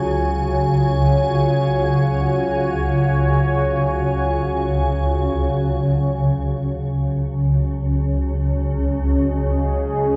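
Ominous and dark, this free-time drone excerpt centres on a swarming, detuned low drone under a filter sweep for its first 5.4 seconds and a deep, moody pad of sustained chords up front, while an icy, crystalline glass pad and barely audible bronze gamelan-type bossed gongs drop out at 5.4 and 5.9 seconds respectively, all steeped in a cathedral reverb lasting 7.1 seconds.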